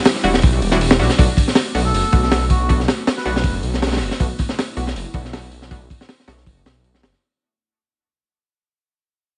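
A crunchy breakbeat kit drives this dark, nostalgic drum and bass and jungle fragment at 159 BPM in 4/4, its 16ths carrying a light swing, with a punchy kick, a high-tuned snare and hi-hat sitting up front in gritty, saturated tone with a rolled-off top. Beneath it, a thick, beating detuned saw bass holds low and menacing, also up front. An airy, very quiet pad sustains chords moving from Em9 to Bm7, while muted, deep filtered chord stabs with chorus and dub echo punctuate the groove. A reedy, nasal melodica drifts in briefly between 1.8 and 3.5 seconds, its line trailing dub echo. The whole passage plays as a drop in a small room under vinyl crackle and a dull, capped top end, beginning to fade out from 1.2 seconds as it is cut from a longer piece.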